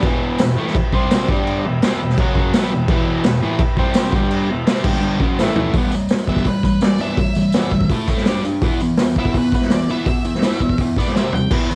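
Garage rock with a gritty, swaggering mood, cut from a longer piece and carrying the character of a home cassette recording made in a small room. A dark, double-tracked overdriven electric guitar plays a picked riff up front throughout, and a raw acoustic drum kit sits just as close, its boomy kick and medium-tuned snare sounding saturated with a rolled-off top, punctuated by two short fills. A buzzy vintage combo organ holds sustained chords in the background for the opening stretch, drops out around 5.8 seconds and returns briefly at the very end. A jingly, band-limited tambourine rattles faintly behind the band. At 6.3 seconds an octave-fuzz lead guitar enters with a picked melody, its distorted tone thickened by analog delay and tape coloring.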